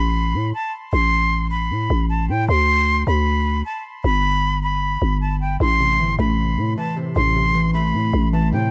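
A jazz flute and a growling 808-style bass open this brooding, melancholic trap excerpt together, sitting up front in a half-time feel at 154 BPM in A minor. The flute carries the melody high in its range with an airy, warm tone, soft attack and expressive vibrato, and a digital delay trails its phrases. Beneath it the bass is buzzy and sine-based, each note striking quickly and then decaying. The opening break moves through Amadd9, Bm/D and G. At 5.6 seconds glassy digital keys enter as accompaniment on a return to Amadd9, their detuned tone shaped by a filter sweep, chorus and phaser. A small room ambience frames the parts, and the recording is cut from a longer piece.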